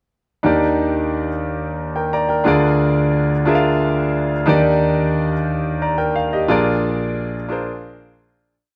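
In a lilting 6/8 at 59 BPM, counted in dotted quarters with a straight feel, this short gospel piece in Eb major moves at an unhurried, soulful pace that still carries a jubilant glow. A clear concert grand piano plays alone from 0.4 to 8.5 seconds, sounding chords in a quarter-note rhythm with close voicings, adorned by grace notes and short fills across a range from Bb1 to Bb5. The harmony moves from Ebmaj7 to Bb7/D, back to Ebmaj7, and settles on Bb7 at 6.5 seconds, where the recording begins to fade out until 8.5 seconds. The piano is intimate and up front, with deep bass, a polished tone, and audible action noise that brings the listener close to the instrument, while a slapback echo follows its attack. The dry, close studio sound has a 1970s character, touched by studio reverb.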